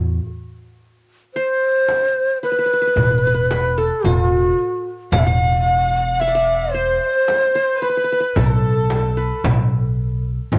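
Set in a stately 10/8 at 111 BPM counted in eighths with a straight feel, this short excerpt of an Arabic maqam ensemble in E bayati carries a passionate, dignified air. A woody, thumpy pizzicato upright bass opens alone at the start, joined at 0.3 seconds by a clay-shelled darbuka played with soft hands, very quiet and lightly saturated. The breathy end-blown ney enters at 1.3 seconds as the lead voice, close-miked and up front with expressive vibrato and tongued notes, its sound colored by cassette tape and analog delay. Behind it, a fingerpicked qanun with bright-edged triple strings adds a second line, while a deep, distant frame drum struck with hard hands fills out the percussion. From 5.1 seconds an earthy chamber violin section with light vibrato joins the second line from further back, and the whole piece has the dry, intimate character of a home recording on cassette.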